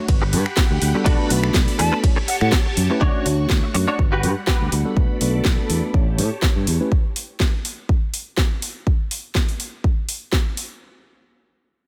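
This excerpt of filtered disco house has a sunny, funky mood and a gently swung groove, with every melodic part pushed through a low-pass filter and a sidechain pump. A mellow tine electric piano and a swirling, vintage string machine with a slow attack carry the chords through a loop of Gmaj7, Bm7 and A7 that lands on Dmaj7. They both drop out at 6.9 seconds. A twangy, picked clean electric guitar plays a compressed riff with ensemble chorus until 4.7 seconds. A fingered electric bass with tube saturation sits up front beneath it. A breathy, hollow concert flute adds a short vibrato phrase with delay at 1.8 seconds. A punchy, layered electronic kick and a house kit with a cracking snare, metallic hats, ride and finger snaps keep going in a small room after the other parts stop. The kit has pumping on the hats and cymbals. The kick runs until 10.4 seconds and the kit until 10.7 seconds.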